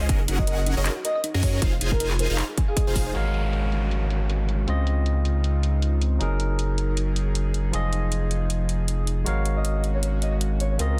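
Future bass at 157 BPM in a half-time, lightly swung feel, bright and playful in mood, this cut from a longer piece opens mid-drop with huge, detuned supersaw chords carrying a phased, filtered riff alongside a round, tine-like synth pluck playing dub-echoed arpeggios in the background. A breathy, flute-like lead sings the melody over the top with lush chorus, vibrato and tape echo, while a hard-clipped electronic kick and a trap kit of metallic hats, handclaps and crash cymbal drive things, everything pumping against the sidechain. Underneath, a deep, saturated sub bass sits up front for the full 11.0 seconds. At 3.1 seconds the drop falls away: the supersaws, pluck and kick stop, a downlifter sweeps in, and a barky, clean tine electric piano takes over the accompaniment with dub echo above an airy, warbling vintage pad. The chords move through Gb69, Fm7, Ab13sus4 and Dbmaj9, and the flute-like lead returns near the end as the trap drums continue, all held in a dense, heavily limited mix with light reverb.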